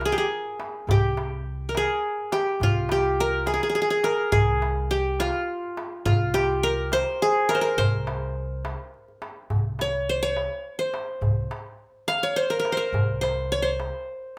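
A bright-edged qanun leads this hypnotic, longing Arabic maqam piece, its plectrum-plucked triple strings sitting up front as it carries the melody in the range from F4 to F5. Beneath it, a pizzicato upright bass with steel strings holds a woody low C2, placed further back in the mix. A large metal-shell darbuka, played with soft hands, adds a crisp, deep pulse in a straight 6/8. The three musicians play live together in a small room whose wet reverb surrounds the ensemble. The passage shifts into a new section at 9.5 seconds; the bass and darbuka stop at 13.9 seconds, leaving the qanun alone until the cut at 14.4 seconds.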